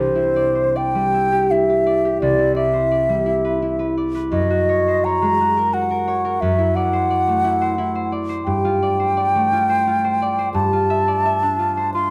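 Close, detailed microphones and light reverb place an airy, mellow concert flute with vibrato and a crisp attack up front beside a bright, ringing, fingerpicked concert harp in this dreamy, pastoral impressionist duo in C Lydian, cut from a longer piece, moving in a rubato 3/4 at around 86 BPM as the flute sings the melody over the harp's accompaniment through chords such as Cadd9, F#add9 and G11 across its 12.1 seconds.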